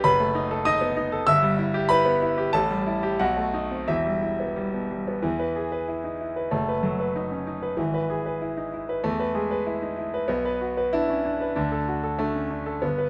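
Agitated and passionate, this fragment of a virtuoso classical piano study unfolds in a free, rubato two-beat pulse. A solo concert grand sits up front, with a clear, vintage tone, deep bass and short sustain, ranging from E1 to E6 and shifting into a new section at 5.2 s. A moderate stone-room reverb surrounds the piano.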